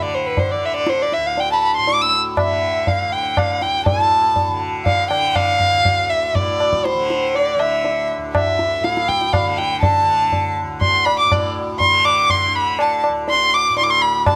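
Close, detailed microphones and light reverb frame this solemn, introspective fragment of Hindustani classical music in raga kafi on D, moving at 121 BPM in 3/4 with a straight feel. Up front, a single bowed violin carries the melody between B4 and E6 with a dark, woody tone, soft attack, vibrato and a smooth top, while a bright, buzzing tanpura shimmers beneath as a softly plucked drone from D2 to D3. High-tuned, ringing tabla enters at 0.4 seconds, sitting close, and the music shifts into a new section at 3.9 seconds.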